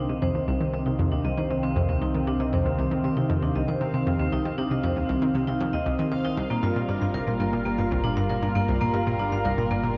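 A lush, detuned unison pad holds sustained chords while a metallic, ringing vibraphone spins delayed arpeggios and a round analog pluck riff sits up front over a fat, saturated bass in the background and a bubbling, resonant stepped-filter texture, forming a hypnotic, cosmic slice of sequencer-driven space music at 117 BPM in C minor that moves from Cm to Gm7 at 6.4 seconds, all bathed in a huge, dark reverb.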